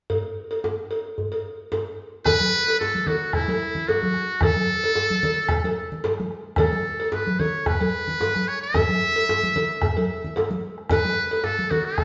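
A straight 4/4 pulse at 111 BPM opens this powerful, earthy excerpt of a West African drum ensemble in A major pentatonic, with a metallic, distant cowbell and a tight, cracking djembe played with soft hands. At 2.3 s the piece moves into its second section as a round bombo and thick-skinned, damped congas join, the congas sounding compressed and saturated. A trumpet with a metal mute enters at the same moment as the solo voice, brilliant, buzzy and thin, with light vibrato and a jazz-style phrasing that sits up front between E4 and E5. The djembe and bombo carry a vintage, band-limited character, while the cowbell sounds as though heard across a large room. The whole band plays live in a stone room with wet reverb, the sound holding nothing above 7.5 kHz, and the passage is cut from a longer piece.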